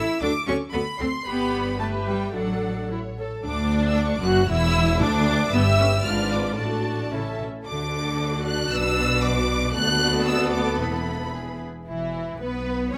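From the first moment, a string orchestra plays a quick, spirited and graceful classical-period movement in D major at 114 BPM in 2/4, with a rubato feel. A lush, focused violin section carries the melody up to F#6 over a smooth, even second violin line and rich, close violas, while an intense cello section and a soft-attacked, expressive double bass section form the bass, every section bowed with vibrato. Light reverb and detailed close microphones frame this passage from a longer piece, whose harmony passes through D7, G#dim7 and Esus4 before the chords fall away at 11.9 seconds.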